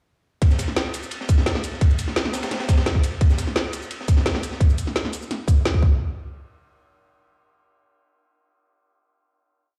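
This short drum and bass piece runs at 172 BPM in a straight 4/4, with a melancholic, lush mood. A drop begins at 0.4 seconds, where three drum parts come in together. Up front sits a tight, layered electronic kick playing a two-step pattern. Beneath it, a produced drum and bass kit rolls along in two-step with a woody snare, metallic closed hats and shaker. Further back, a looped acoustic breakbeat with edits adds a saturated, gritty texture, with dark cymbals, a high-tuned snare and a rolled-off top. The breakbeat drops out at 4.6 seconds and the kick at 5.9 seconds, leaving a final hit from 6.0 seconds. The whole piece sounds as though played on a big sound system in a bare stone room, with light reverb.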